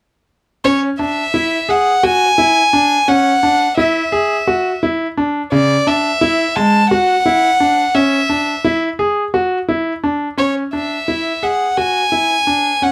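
This progressive instrumental piece is intricate and driving, moving at 172 BPM counted in eighths through an odd 7/8 metre with a straight feel, centred on C# Phrygian and tuned to A4 = 438 Hz. A single bowed violin carries the melody between C#5 and A5, its rich, pure tone played sul tasto with a soft attack that gives it a floating quality. Beneath it, a clear, natural-sounding grand piano spins arpeggios from C#3 to G#4, sitting up front in the mix, with the harmony resting on a C#madd11 chord. Both parts play together from 0.6 seconds, and the music shifts into a new section at 10.4 seconds before the passage is cut off at 12.9 seconds. Close, detailed microphones and a moderate studio reverb give the performance an intimate yet open sense of space.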